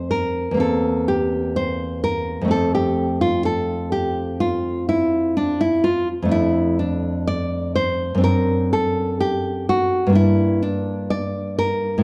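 A fingerpicked, full-bodied nylon-string guitar plays alone and up front for the whole 12 seconds of this fragment from a solemn, grave baroque-style classical dance in F major. It moves at a rubato 63 BPM in 4/4, spans E2 to D5 through chords running from F and C7/E to Dm/F, D7/F# and Gm, and sits in a moderate recital-hall reverb with a dark production.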